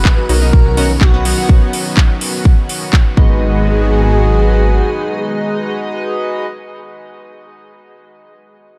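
Progressive house at 125 BPM in G# minor, this short, expansive and emotional clip opens on a drop, moving from Badd9 to G#m7. A punchy, up-front electronic kick and a house kit of handclaps and metallic hi-hats, both tape-tinged and re-recorded in a small room, drive the groove until the kit falls away at 3.0 seconds and the kick follows at 3.3. Beneath them a deep, rumbling detuned saw bass, saturated and beating, pumps against the kick and carries on until 4.8 seconds. A lush supersaw pad holds sustained chords with a soft attack, while a retro, glossy chorused polysynth adds pumping stabs with dub echo and a very quiet analog pluck ripples through arpeggios. Set in the background, a smooth portamento lead with vibrato, chorus and dub echo sings the melody, shadowed by an even fainter airy, dreamy second line, all within a dark, dry production.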